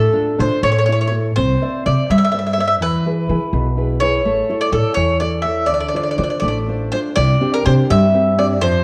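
A rubato lilt in 6/8 carries this short, wistful and passionate fragment of an Italian folk serenade. The up-front mandolin sings the melody with round, picked double strings, while a fingerpicked classical nylon-string guitar with fresh strings and audible finger squeak supplies the accompaniment, and a woody pizzicato upright bass anchors the low end. The whole piece sits in a moderate recital-hall reverb and carries the worn, warbling pitch drift of old cassette tape.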